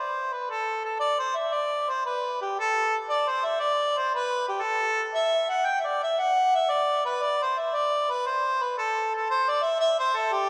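Bathed in a long church reverb of 3.1 seconds, this spirited, wild Celtic folk fragment in 6/8 at 116 BPM in A dorian features a lone mellow harmonica, played in a classical style with light vibrato and a soft attack, that sits up front yet sounds distant and roomy as it ranges from G4 to G5 before moving into a new section at 9.3 seconds.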